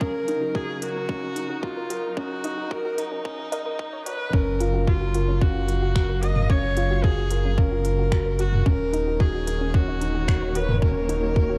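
Opening on an up-front, rich viola melody with an airy bow over a felt-muted upright piano riff with audible action noise, veiled con sordino strings in the background, a very quiet round, warbling pluck arpeggio and a tight, overdriven electronic kick, this intimate, hypnotic piano and strings electronica at 111 BPM adds a crisp-hatted electronic kit with finger snaps and toms at 0.3 seconds, builds through a filter sweep, and drops at 4.3 seconds as a deep sine sub bass with sidechain pumping arrives under Ebm7 and Gbmaj7 chords, all in a dark, warm production with light digital reverb.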